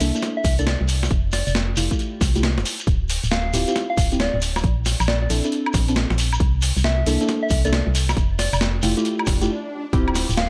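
This is a moody, bouncy two-step UK garage excerpt at 136 BPM in 4/4, with a 65% swing on the sixteenths and tuning set slightly flat at A4 = 437 Hz. A hollow, organ-like FM bass sits up front, dark and percussive with a fast, decaying attack, and an electronic kick joins at 0.4 s with a punchy, layered punch that sounds re-recorded in a small room. Around them, a gritty, compressed breakbeat-style kit of hi-hat, medium-tuned snare and woodblock is pushed through overdrive, while a grainy acoustic shekere adds a mellow live-room shimmer. Deep, soft chord stabs with a filter-swept sawtooth-and-sine tone, analog chorus and tape echo carry the progression of C13, Fmaj9, Dm11 and Bbmaj9#11. Over them, a round, keys-like FM lead with a sub octave warbles through chorus, cassette-tape colour and tape echo, its gentle, vintage voice bright. An electronic swell arrives at 9.3 s ahead of a brief break at 9.5 s, all set in a digital ambience.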